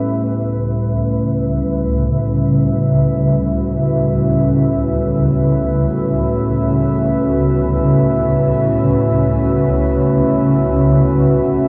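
Dark ambient drone in free time, unsettling and dark, heard as an excerpt cut from a longer piece. A deep, moody pad built from detuned sawtooth and sine voices with a sub octave holds sustained chords from the start, its mellow tone softened by chorus and its own reverb, sitting up front. From 0.6 seconds a swarming drone joins in the low register, tense and evolving, its detuned sine layers shifting through a moving notch and a granular grain with slow attack and long release. Beneath them, very quiet, a bronze singing bowl played with a suede striker rings on a single note, metallic and meditative, its slow beating giving a vintage, band-limited shimmer. The whole mix is soaked in a lush hall reverb with a 2.9-second decay, lending a dreamy, enveloping haze.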